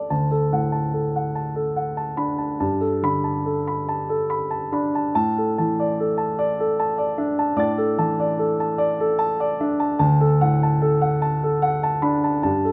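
A close, moderately reverberant studio sound frames this brief, intimate fragment of neoclassical minimalist piano, where a dark, mellow baby grand plays alone in D major at a rubato 49 BPM in 6/8, moving hopefully from D through Gadd9 and Asus4 before settling back on D at 10.0 seconds, its smooth, vintage tone sitting up front across a span from D2 to A6.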